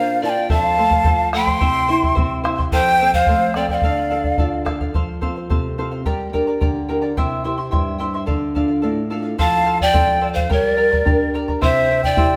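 Melancholic and wistful, this Andean folk excerpt in 2/4 sets a breathy large quena up front on the melody, with a pan flute carrying a second line that has a chiffy, slightly unsteady tone and vibrato; both fall silent at 4.6 seconds and return at 9.4 seconds. Underneath, a bright, shimmering charango fingerpicks its double strings, a small, thumb-plucked nylon-string guitar adds finger squeak, and a round, dry bombo enters at 0.5 seconds. The band plays live in a stone room whose reverb lends the recording a wet air.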